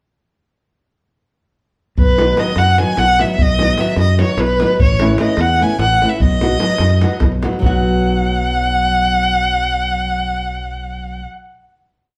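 A straight 7/8 pulse at 298 BPM, counted in eighths, drives this wild and festive Balkan wedding-band folk piece in B mixolydian: an up-front, rich bowed violin carries a motif-based melody with vibrato and portamento over growly, fingered electric bass on root and fifth on the main beats, woody fingerpicked nylon-string guitar playing close-voiced off-beat chords, and a tight, vintage two-stick davul pattern that drops out at 7.8 s, just after the band settles onto a final chord at 7.6 s, the whole band heard playing live in a stone room with lossy compression artefacts.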